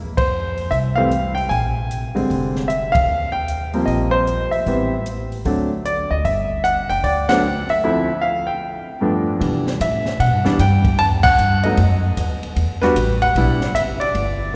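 An intimate, up-front grand piano with audible action noise carries the melody in this sophisticated, playful swinging jazz trio excerpt, over woody pizzicato upright bass and a dark, smooth cocktail drum kit with a high-tuned snare, punchy kick, hi-hat, ride and crash, all bathed in a lush church reverb, with band accents landing at 0.1, 2.9 and 7.2 seconds.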